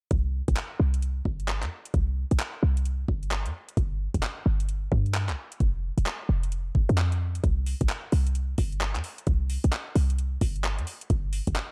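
Skippy and moody, this excerpt of two-step UK garage moves at 131 BPM with a 63% swing on the 16ths, wrapped in a dark digital ambience. A punchy, tight 808-style bass with a sine body, noise layer and fast attack that quickly decays sits up front from Eb1 to G2, alongside a knocking, tape-warm electronic kick in studio reverb. Behind them, a layered garage kit adds handclaps and metallic hi-hats, running until 11.7 seconds.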